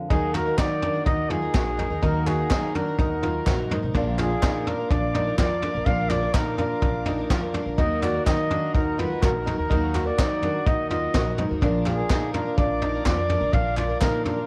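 A roomy, classical-style flugelhorn carries the melody through tape echo in this bittersweet, stirring indie folk excerpt at 125 BPM in Eb harmonic minor, moving between Ebm and Bb over a dark fingerpicked acoustic guitar, a full-bodied picked dreadnought with finger squeak, clear, slightly detuned upright piano arpeggios, woody, thumpy pizzicato upright bass, a brushed drum kit with a high-tuned snare and tight kick, hollow group handclaps in the background, and a very quiet, floating chamber string section, captured as a dry home recording on cassette.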